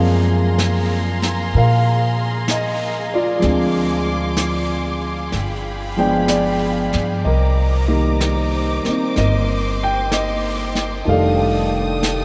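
Late-night and romantic, this swung jazz ballad fragment sets a warm, open concert grand piano with long sustain and a woody pizzicato upright bass up front, while a dark, lush string section holds bowed sustained chords with vibrato, and a vintage brush drum kit joins at 0.6 s on snare and hi-hat, the music unfolding in a vast, echoing space as the harmony drifts from Gbmaj9#11 to F13.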